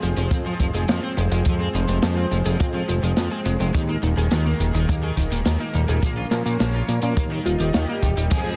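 Nocturnal and moody, this straight 105 BPM synthwave excerpt in 4/4 moves through Fm, Ebsus4, Bbm and Eb as a fat, saturated analog bass sits up front beside a boomy kick and a dark, small-room jazz kit, while a shimmering pulse-width pad pumps with sidechain, a round detuned pluck arpeggiates with chorus and tape echo, an overdriven, double-tracked stack guitar picks a bright riff, a bold unison lead with vibrato and digital delay enters at 7.5 seconds, and a vintage string-machine violin line appears at 8.3 seconds, all in a dense, heavily limited master with light room reverb.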